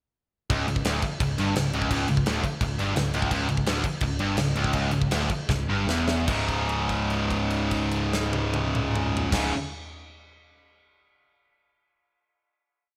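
This short, complete heavy metal piece in C# minor opens at 0.5 seconds with a relentless, aggressive single-note riff from three picked guitars: a bright, high-gain distorted guitar up front, a very quiet high-gain twin, and a double-tracked overdriven guitar in the background, all in 4/4 at 145-171 BPM. A growly, punchy overdriven bass drives eighth notes doubling the riff, while a big acoustic rock kit with a tight kick, medium-tuned snare, crash and toms pounds a metal groove treated with gated reverb. The tempo slows from 3.3 seconds, a drum fill from 5.5 seconds leads into a final C#5 chord held from 6.3 seconds, all framed by bright 1980s-style digital production with light small-room reverb.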